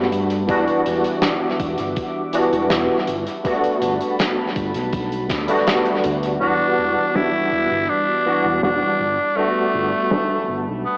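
A straight, unhurried 4/4 pulse carries this nostalgic, faded vaporwave fragment, cut from a longer piece, with a big rock kit of hi-hat and a medium-tuned snare muffled by low-pass filtering and trailed by tape echo, joined by an overdriven, thumpy electronic kick from 0.5 to 6.2 seconds. Underneath, a dark, round and punchy fingered electric bass rumbles with tube saturation, while a bright, barky tine electric piano sits up front, lightly overdriven through a combo amp and smeared by ensemble chorus and tape echo as it comps through Em9 and Gmaj9 chords. Deep in the background, a warbling, detuned pad of sawtooth and triangle tones swells in slowly and hangs on, mellow and lo-fi, with chorus and a coarse 12-bit sampler grit. At 6.4 seconds a raspy, growling tenor saxophone steps forward as the solo voice, edgy and gritty with a light vibrato and its own tape echo. The whole mix sounds like a worn cassette or an AM radio broadcast, soaked in echo and a moderate plate reverb.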